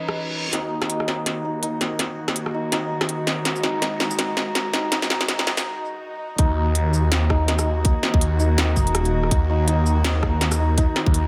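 This tense, dark half-time drum and bass excerpt opens on a reverse cymbal over a close, sul tasto chamber cello section holding sustained chords with sidechain pumping and a low-pass filter, while a shimmering hammered santur rings out arpeggios through dub echo. An industrial kit of clanging snare, crisp hats, rim click and shaker plays a drum fill as a thick, swirling detuned saw bass with phaser arrives at 0.5 seconds, building through a filter sweep on the cellos to a brief break and an electronic swell. At 6.4 seconds the drop lands with a tight, layered electronic kick up front, in an echo-heavy mix of light reverb and digital ambience.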